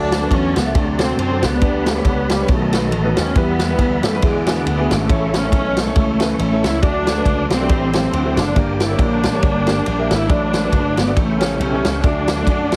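A lush, bowed string section carries the melody from the opening moment, joined at once by a clear concert grand piano, a tonewheel organ and a punchy slap bass, with a swinging big-band drum kit arriving at 0.1 seconds. This uptempo gospel piece has a hopeful, jubilant mood and a swung feel, and its chords move through rich changes, including a turn to a minor chord near 8.6 seconds before settling home by 12.0 seconds. The strings sit up front with a smooth top, a focused tone and vibrato, while the piano supplies natural accompaniment with a deep low end. Behind them, the organ holds sustained chords with a lightly overdriven tone, key click, chorus vibrato and a slow rotary speaker. The bright, amped bass has an envelope filter, and the drums play kick, ride cymbal and a medium-tuned snare, with a boomy kick and a distant, roomy character. The mix carries light reverb and small room ambience under a heavily compressed, radio-like sound, and the passage is cut from a longer piece.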